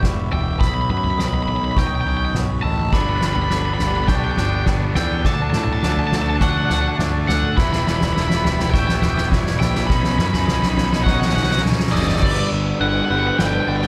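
In light studio reverb, this soaring, euphoric post-rock excerpt at 103 BPM in G lydian builds through a long fill on an up-front, roomy soft-mallet drum kit with fat snare and punchy kick, over a fuzzy overdriven bass, twangy clean guitar arpeggios and mellow, bell-like glockenspiel arpeggios in the background, and a dark, very quiet bowed string section holding chords, while a raw overdriven guitar carries the melody from 0.3 seconds and a bright, compressed distorted guitar riff enters at 2.9 seconds before dropping to a lower register at 12.2 seconds as the chords move from Em through Badd9, G and D and back to G.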